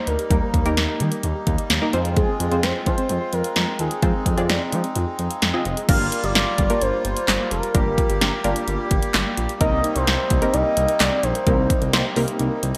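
Bright, 1980s-style digital production, with a moderate plate reverb, frames this upbeat, nostalgic synth-pop clip cut from a longer piece. A deep house drum kit sits up front with a deep kick, punchy snare, handclaps, hi-hat and crash cymbal, all treated with gated reverb. Beneath it, a smooth gliding synth bass with portamento carries the low end, while a funky, nasal polysynth comp with chorus adds detuned accompaniment. An expressive portamento lead, warbling and vintage with vibrato, chorus and delay, sings the melody over reedy, slowly beating accordion chords and a soft, round pluck playing arpeggios in the background. The harmony moves from Eb to Fm, then shifts at 5.9 seconds to Gm7 and Cm7 for the second half.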